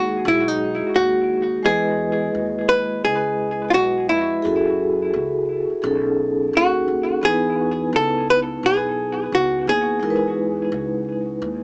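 A relaxed 86 BPM groove in 4/4 swings its sixteenth notes, setting a cool jazz-hop mood in E major. The upfront, dark, clean archtop guitar carries the melody with a compressed, picked hollow-body tone touched by analog delay, opening with a brief solo phrase over the first 1.6 seconds and stopping at 11.0 seconds. Beneath it, the vibraphone played with soft mallets adds mellow, ringing accompaniment with a medium motor vibrato. The upright bass sits low in the mix, giving a woody, pizzicato pulse from steel strings. After a rootless Emaj7 opening, the harmony moves through Emaj7, F#m9 and B13 before returning to Emaj7. A modest small-room ambience and a small-speaker character give this short cut from a longer piece an intimate, lo-fi feel.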